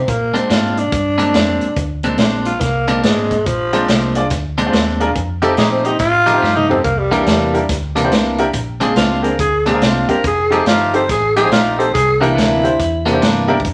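A growling, raspy tenor saxophone opens this gritty, laid-back electric blues shuffle at 142 BPM, soloing with light vibrato and scooped notes over a dark, round, foam-muted fingered bass and a vintage drum kit with a tight kick, a medium-tuned snare and a rolled-off top, which plays short fills at 6.4 and 13.4 seconds. A clean, twangy electric guitar carries the picked, compressed riff up front, and from 3.7 seconds a brilliant baby grand piano adds short-sustained accompaniment. The chords move through Bb9, F9 and C9 in a wet studio reverb, and the clip is cut from a longer piece.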